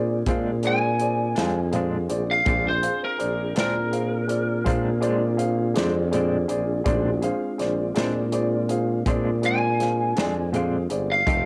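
Slow blues in 12/8, gritty and swaggering, this is a short cut from a longer piece made as a home cassette recording with light studio reverb. A close-miked tuba with scooped notes and tube saturation carries the bass up front. Around it, a woody upright piano with audible action noise, a very quiet, flute-like tonewheel organ through a rotary speaker, a clean, fingered hollow-body guitar with tremolo, and an airy acoustic drum kit with a punchy kick fill out the accompaniment. From 0.7 seconds a bright, twangy, slightly broken-up lead guitar sits up front with the melody, its sound colored by cassette tape just like the piano, drums and hollow-body guitar.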